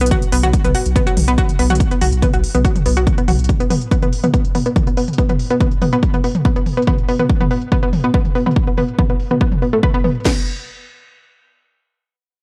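A gritty, dry cassette-tape sound frames this relentless, industrial slice of driving peak-time techno, where an up-front detuned sawtooth pluck with chorus, overdrive and tape echo carries the riff over a thick, saturated sine sub bass that drops out at 3.5 seconds, while two overdriven electronic drum kits, one with a heavy kick, cracking snare and crash and the other with smooth filtered hats and toms, push on beneath filter sweeps until the hat-and-tom kit falls away at 10.3 seconds and the kick-and-snare kit at 10.4 seconds.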